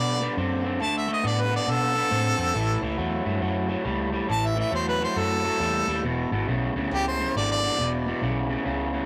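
Bright, close-miked harmonica carries the melody up front, its jazz-style solo marked by light vibrato, tongue slaps and scooped notes, colored by overdrive and an analog delay until it stops at 7.9 seconds. This short cut from a longer electric blues shuffle moves at 138 BPM in 4/4 with a swung feel, sitting in A mixolydian and giving off a laid-back, soulful mood. A crunchy, picked electric guitar drives the riff just as prominently, its overdriven tone running to 9.1 seconds. Beneath them, a vintage foam-muted fingered bass supplies a dark, round, amped low end. The chords travel from D7 to A7 at 2.5 seconds and on to E7 at 6.0 seconds, all captured in a rough rehearsal-room recording with tube saturation and a modest small-room reverb.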